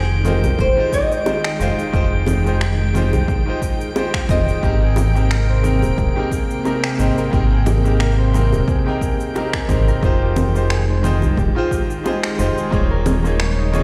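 A punchy, overdriven electronic kick and layered electronic congas, cabasa and finger snaps set a lightly swung groove, with tight, high-tuned bongos in the background and a round, deep analog bass up front, giving this sunny, relaxed sunset chillout excerpt its easy pulse. A small, fingerpicked nylon-string guitar carries the melody with delay until 4.9 seconds, and from 4.6 seconds a mellow, ringing concert harp takes up arpeggios with tape echo, while a brilliant, polished grand piano accompanies through its own tape echo. Underneath, a silky, warbling string machine holds sustained chords in ensemble chorus, and a glassy, drifting harmonics texture hangs high and calm, all set in a large, reverberant room sound.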